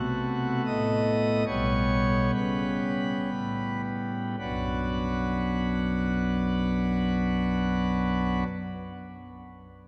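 A full, up-front pipe organ principal chorus in romantic voicing plays alone throughout this dark, grave classical chorale fragment in 3/4, moving with rubato and slowing through its first 4.4 seconds over B7 and A9/B harmonies before settling on B minor, all bathed in a long, wet cathedral reverb.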